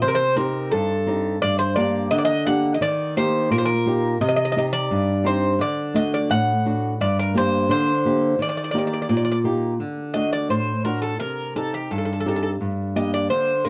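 Bouzouki and flamenco guitar open together on a cool, brooding Greek folk excerpt at 86 BPM in 2/4 and D phrygian dominant, the bouzouki's metallic, double-strung picked melody riding over fingerpicked guitar accompaniment with audible finger squeak, both up front in a dry, close 1970s-style small-room sound as the chords cycle through Cm, Gm, Eb and D before a new passage begins at 9.8 seconds.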